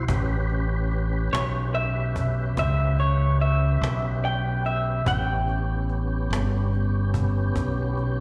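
A slightly broken-up, lo-fi electric guitar through a small old amp carries the melody from 1.3 s, colored by tremolo, slapback echo and analog delay, in this laid-back, gritty slow blues excerpt over an A7 chord, backed by sustained tonewheel organ chords with a lightly overdriven tone, key click and a slow rotary speaker, a punchy, direct fingered electric bass, and a woody cajon played with soft hands, captured as a live gig heard through the venue's PA.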